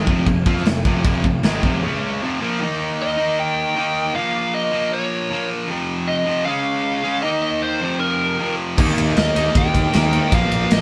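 Hard rock with a heavy, aggressive mood, cut from a longer piece and played by a band live in one room with moderate studio reverb: a bright, overdriven electric guitar riff sits up front throughout, backed at first by a sludgy second guitar, a fuzz-laden picked bass and a big, dark acoustic kit with a punchy kick, crash, ride and snare. At 1.8 seconds the band drops into a break, and from 3.0 seconds a biting overdriven lead guitar carries the melody over the lone riff guitar. The sludgy guitar, bass and drums all return at 8.8 seconds.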